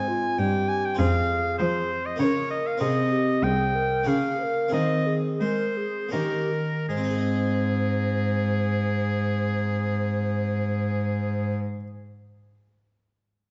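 All four parts begin together at the opening of this short cut from a longer baroque-style sonata movement in triple metre, radiant and serene in mood. A hollow, airy wooden tenor recorder carries the melody with vibrato, tongued notes and a touch of chiff, its highs rolled off, while an up-front oboe with light vibrato sings a bright second line in classical style above it. Beneath them, a harpsichord with two sets of strings supplies full, plucked French-style accompaniment, and a single bowed cello in period style gives a rich, reedy gut-string bass that stands out as the most prominent part. The pace slows from 1.9 to 6.9 seconds, settling on a cadence before a second section begins at 6.9 seconds. The production is dark and warm, bathed in the reverb of a recital hall.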